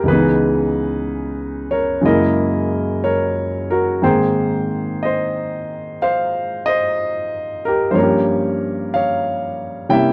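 A dry, close studio sound in a 1970s vein, touched with light reverb, frames this brief fragment of a melancholic, smoky jazz ballad in swung 4/4. A smooth, vintage grand piano plays alone, up front in the mix, ranging from Db2 to G5 across its 10.1 seconds. Its harmony moves from Dbm7 through Gb9 and Abmaj9, arriving at Gm7b5 at 8.0 seconds.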